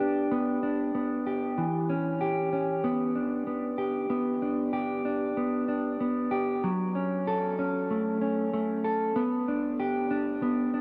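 Dream pop at 95 BPM in a straight 4/4, this hazy, haunting fragment of a longer piece features a lone mellow electric guitar, clean, dark and fingered, sitting up front across its 10.8 seconds. Lush chorus and digital delay color the guitar, while a huge ambient reverb with a long tail surrounds it in a dreamy wash. The chords drift from G/B through Em6, G and F#m before returning to G/B at 9.2 seconds, with the tuning set slightly sharp at A4 = 441 Hz.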